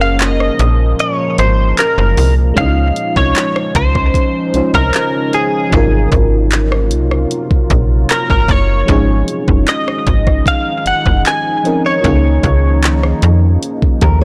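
A straight 4/4 contemporary R&B groove from an electronic, knocking drum kit of kick, hi-hat, handclaps and rim click, its kick dropping out from 1.0 to 2.6 s, carries this tender, romantic excerpt, where a snappy, metallic FM slap bass sits up front beneath a glassy, bell-like FM electric piano with chorus, a deep, moody detuned pad with a long release and built-in reverb, and a bright, twangy direct-recorded clean electric guitar melody with chorus and delay, before a thumb-plucked nylon-string guitar arrives at 14.0 s, all in a dry, blown-out, overdriven recording.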